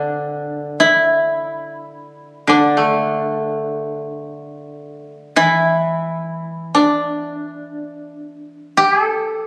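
Japanese traditional chamber music, austere and calm, in a short fragment cut from a longer piece. Two fingerpicked kotos sit up front with a dry, woody tone: one carries the melody in the middle register, and a quieter second koto plays a lower accompaniment that stops at 8.7 seconds, leaving the melody to finish alone at 9.5 seconds. The phone recording of the room adds light club reverb and compression.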